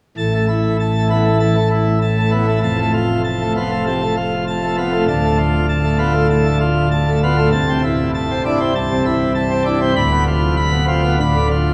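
A pipe organ on full plenum dominates this stormy, dramatic classical toccata, sounding alone from 0.2 to 11.7 seconds in a short passage cut from a longer piece. Its baroque voicing, brilliant mixtures and audible chiff put the instrument up front, spanning a range from C1 to B5. The music moves at 98 BPM in a straight 4/4, set in A minor with tuning at A4 = 439 Hz. The harmony travels from A5 through F, Dm and Am/C before landing on Bdim/D at 10.0 seconds. A cathedral reverb with a 5.3-second decay surrounds the organ, giving the sound a vast, lingering space.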